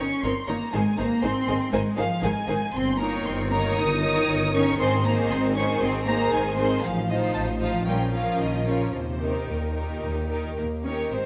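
A rubato pulse in 4/4, moving between 108 and 122 BPM, carries this graceful, cheerful fragment of a quick classical-period movement for string orchestra, its harmony travelling from Eb7 to Ab and through F7/A and Bbm before settling on Eb. The first violins sing the melody with a focused, vibrato-rich tone, the second violins add a lush inner line, and the violas fill in an intense accompaniment, while clear, lightly vibrated cellos and smooth, even double basses sitting up front anchor the bass. All five sections play throughout the roughly 11 seconds, set in a concert hall with moderate reverb and a softened top end.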